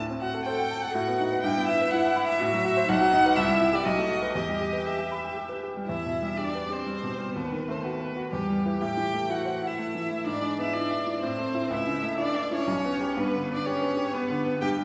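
Heard from further back in a wet scoring-stage reverb, this spirited, graceful classical-period piano trio movement in E minor moves at a quick 123 BPM in 3/4 with rubato, as a rich, expressive violin sings the melody with vibrato and portamento over bright, brilliant grand piano accompaniment of short sustain, while a smooth, even cello enters at 0.4 seconds with a second line before the music turns from its opening section into a new one at 5.9 seconds.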